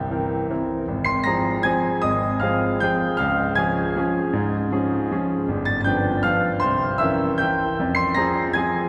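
Nostalgic and elegant, this short classical piano waltz in F minor moves in 3/4 at 157 BPM with uneven beats and a flexible rubato feel, cut from a longer piece. A solo baby grand piano, brilliant and open with long sustain, sits up front and spans G1 to C7, tracing a progression from C7 through Fm/Ab, Db, G7 and C7b9 before settling on Fm at 7.8 seconds. Heard from further back, the playing is bathed in a wet cathedral reverb with a 5.1-second decay.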